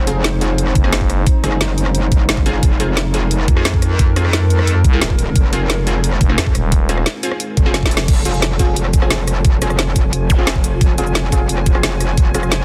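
A dense, heavily limited and dry mix drives this tense, aggressive dark technical drum and bass excerpt, where a metallic, distorted wobble bass and an overdriven knocking kick sit up front beside a woody-snared kit with bright hats, a growling FM bass surfaces at 0.8 seconds, punchy orchestra-hit-like stabs trail dub echo over a moody detuned analog pad, a drum fill from 7.7 seconds and a band accent at 8.0 seconds restart the drop, and a blurred granular cloud pad and a brief zap drift in the background near the end.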